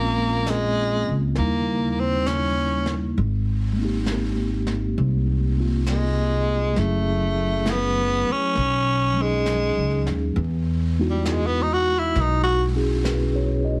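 A tender, intimate jazz ballad excerpt opens with a raspy, growling tenor saxophone carrying the melody up front over clean, mellow tine electric piano chords and a woody pizzicato upright bass, joined at 0.5 seconds by a dark, smooth brushed drum kit, all moving at a slow swung 67 BPM through lush ninth chords like Bbm9 and Abmaj9 before the sax takes a gritty, vibrato-laden solo from 10.4 seconds and bows out at 12.6 seconds, the whole piece sitting in a moderate studio reverb with a heavily compressed, radio-like sound.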